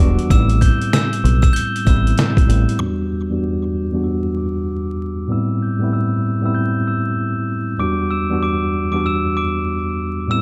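Gritty and tough, this boom-bap hip-hop excerpt at 96 BPM in E minor swings its 16ths as a worn, slightly out-of-tune, lightly overdriven tine electric piano plays Am7 and Em7 chords up front, while a round, punchy dub fingered bass and a compressed, pitched-down sampler-style drum kit with a thumpy kick both drop out by 2.8 seconds, leaving the piano and a quiet, sparkling glockenspiel struck with hard plastic mallets ringing high above through a filter sweep in a dry room dusted with vinyl crackle.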